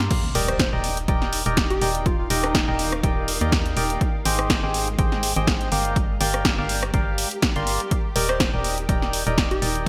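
A feel-good, joyful piece of piano house opens straight into a drop: a dark, organ-like FM bass pumps beneath overdriven analog drum machine hits of crash, hi-hat, rim click and snare, joined at once by a punchy, overdriven electronic kick and a very quiet electronic impact. A hollow, nasal organ stab carries the riff up front with chorus and digital delay, while a round, keys-like synth lead plays gently in the background from 0.4 s and returns at 8.2 s, and a cloudy granular pad drifts in at 0.9 s. The chords move from Ebmaj7 through Abmaj7 and Gm7 back to Ebmaj7, set in a lush hall reverb with a bright 1980s-style digital sheen.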